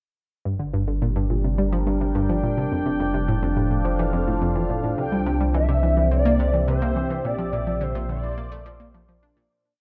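Hypnotic and cosmic, this short, complete piece of ambient, sequencer-driven space music moves in a straight 4/4 over a slowly shifting progression of Gm, F6, C and Bbadd9. An analog pluck opens at 0.5 seconds with a bright, detuned 16-step sequence, its sawtooth and square tones edged with a noise layer and ring modulation, while a filter sweep runs through it and chorus and tape echo trail each note. A deep sine sub bass enters alongside, holding round, sustained roots beneath, and at 1.0 seconds a slow-attack wavetable pad brings morphing, warbling vintage chords coloured by phaser and its own reverb. From 5.0 seconds a mellow portamento lead sings arching motif-based phrases, its smooth sawtooth-and-triangle voice carrying vibrato, ensemble chorus and tape echo. A plate reverb bathes the dark production, and the piece fades out over its final seconds.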